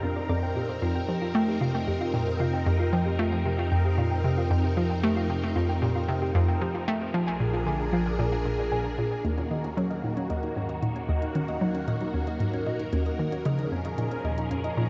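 Drenched in a huge ambient reverb, this dark, expansive, cosmic excerpt of sequencer-driven space music moves at 114 BPM in a straight 4/4. A hollow, bouncy square-wave pluck sits up front with a warbling riff, while a tine-like FM pluck spins chorused, delayed arpeggios over the swirling, phased chords of a bright vintage string machine and a round, deep analog bass. At 9.2 s the bass drops out, the harmony settles into Eb minor, and clicky electronic hi-hats and percussion blips fade in from the background.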